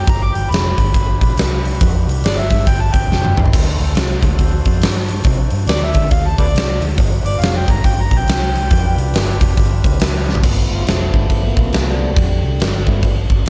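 A gritty, overdriven harmonica with slapback echo and digital delay opens this raunchy blues rock and southern rock shuffle at 139 BPM in G mixolydian, its jazz-style solo full of tongue slaps, scooped notes and light vibrato over a dark, round, foam-muted fingered electric bass and a huge arena drum kit with a punchy kick, fat snare and bright cymbals that fills at 3.1 seconds, while a percussive tonewheel organ with key click, light overdrive and subtle chorus holds full sustained chords in the background over G7 and D7 before taking a solo at 10.4 seconds, and this fragment of a longer piece ends at 13.5 seconds.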